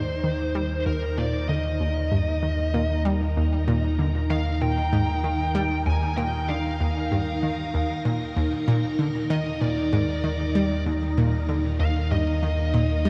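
A straight 4/4 pulse at 96 BPM drives this expansive, cosmic stretch of sequencer-driven ambient space music in Eb major, where a bright, detuned analog pluck riff with chorus and delay and a deep, round analog bass holding Eb2 sit beneath swirling, vintage string-machine chords tinted by ensemble chorus, phaser and shimmer reverb, while a bluesy, distorted electric lead guitar carries the melody through shimmer reverb and delay, the mix bathed in a vast, echoing cathedral reverb.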